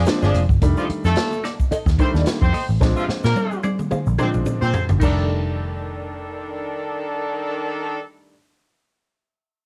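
A punchy, round, foam-muted electric bass sits up front in this gritty funk excerpt at 109 BPM in 4/4, swinging its sixteenths in F mixolydian and moving between Bb9 and F13 chords. A horn section with light vibrato and a roomy, distant feel carries a second line, while a woody upright piano with short sustain adds stabs in the middle register. A bright, twangy clean electric guitar sits in the background, colored by wah and tremolo, alongside a grainy tube shaker. A swinging big-band drum kit with a medium-tuned snare and punchy kick joins the band's opening accent and plays until 5.2 seconds, including a fill from 2.8 to 5.0 seconds. The dry home cassette recording gives the whole piece a lo-fi, vintage grit.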